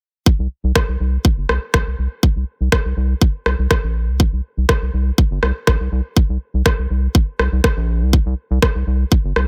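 This short cut from a longer minimal techno track sounds dry and close, with little reverb, and its three parts all sit up front. The mood is quirky and clinical, moving at a straight 122 BPM in 4/4, tuned to A4 = 436 Hz. A tight, layered electronic kick with overdrive starts at 0.3 seconds and carries most of the weight until it stops at 9.2 seconds. Just after it, a round analog bass enters, blending square and sine tones with wave-folding into a deep, mellow, evolving sustain between G1 and C2, pumping against the sidechain. From 0.8 seconds a produced electronic rim click adds a tape-warm tick that sounds re-recorded in a small room, running through to the end alongside the bass.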